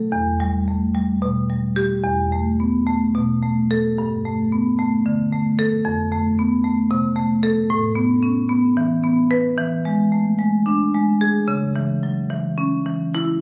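A solo marimba, played with medium hard mallets on rosewood bars, sits up front in this short contemporary classical passage cut from a longer work. Its tone is woody and bright, with a percussive attack, and it ranges from a deep E2 up to B4. The music moves in 7/8 at 221 BPM counted in eighths, yet the pulse is handled with rubato, giving a hypnotic, reflective mood. The harmony drifts through Em, Esus4, Gadd9, F, Aadd9 and E7 before landing on C#m near 11.5 seconds. The sound carries a moderate recital hall reverb blended with a club-style reverb, and the phone recording made in the room adds compression.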